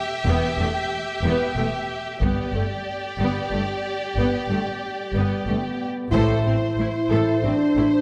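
Entering up front at 5.2 s with sustained chords, a dark French horn section crowns this dramatic, brooding cinematic orchestral passage in 3/4 at 92 BPM in A minor. Beneath it, lush bowed violins with vibrato carry the melody and a second line over smooth violas, background cellos and distant double basses. Heavy-stick taiko drums join at 2.2 s as the build-up moves from Em to G, landing on an accented Am at 6.1 s in a wet concert hall reverb.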